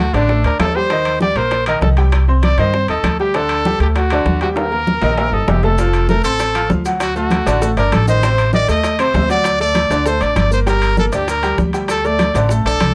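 Salsa with a passionate, driving feel, led by a punchy, close-miked trumpet with vibrato up front over a brilliant, slightly detuned upright piano with audible action noise, a woody, thumpy pizzicato upright bass, and background bongos, ringing congas and vintage metal-shell timbales, with a drum fill at 4.6 seconds before grainy maracas join at 5.8 seconds, set in a modest small-room reverb.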